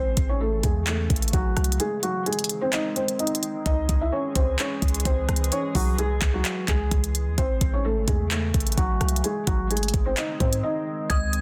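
Trap hip hop with an eerie, brooding half-time feel, cut from a longer piece, where a dark, felt-muted upright piano carries the melody up front with audible action noise, a low-pass filter and a digital delay over a glassy, ethereal FM pad, a deep, boomy 808-style bass with a noise layer, and a crisp, knocking trap kit of kick, hi-hat, handclaps and rim click whose kick drops out from 1.8 to 3.7 seconds before a break at 10.6 seconds and a brief metallic, inharmonic FM bell ringing in at 11.1 seconds, all in a dense, heavily limited modern master with little reverb.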